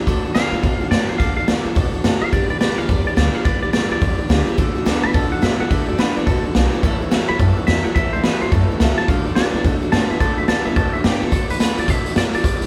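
A bright, full-bodied picked acoustic guitar opens this upbeat, rollicking rockabilly excerpt at a swung 213 BPM in D major, joined almost at once by a woody, thumpy pizzicato upright bass and an up-front, gritty garage drum kit with a punchy kick in a stone-room sound, while a clean, compressed, twangy electric guitar plays a spring-reverb solo over D, G and A chords, and from 4.6 to 11.3 seconds a slightly broken-up, lo-fi electric guitar through a small old amp adds a riff in the background of a live, lightly reverberant band.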